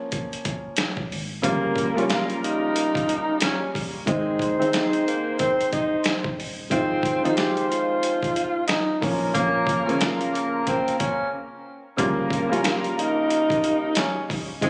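A dark upright piano opens this tough, dark boom-bap hip-hop excerpt, its woody, mellow tone filtered and set over a Bbm chord, with gritty, pitched-down sampler drums arriving almost at once. The kit sits up front at 91 BPM with a swung 16th-note feel, pairing a thumpy kick and a medium-tuned snare with hi-hat under a vintage 12-bit crunch. A soft, round dub sub bass slips in at 1.1 seconds and stays deep in the background, and at 1.4 seconds a breathy, close-miked tenor saxophone takes the lead with whispered, intimate jazz phrasing and vibrato, touched by digital delay. A loose horn section enters alongside it with octave-doubled stabs in a jazz style, also filtered and delayed, as the harmony moves through Gm7b5, Ab and Fm7/Ab before returning to Bbm. A brief break arrives at 11.3 seconds, and the whole mix carries a club-like reverb and compression, as if captured on a phone in the room.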